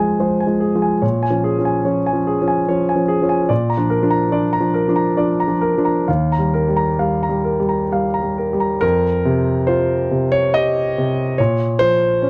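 The sound is dry and close, with the feel of a 1970s studio and very little reverb around the instrument. A solo concert grand piano sits up front, its tone clear and natural, with a deep bass and a short sustain. This is an excerpt of neoclassical minimalist piano in 3/4, played with a rubato feel, and its mood is intimate and reflective. The harmony moves from Fm through Bbm7 and Bb to Ebadd9, then shifts at 8.8 seconds to a new passage built on Fsus2 and Bbm. The playing spans from Eb2 up to Bb5, and the piano is heard alone throughout this 12.3-second fragment of a longer work.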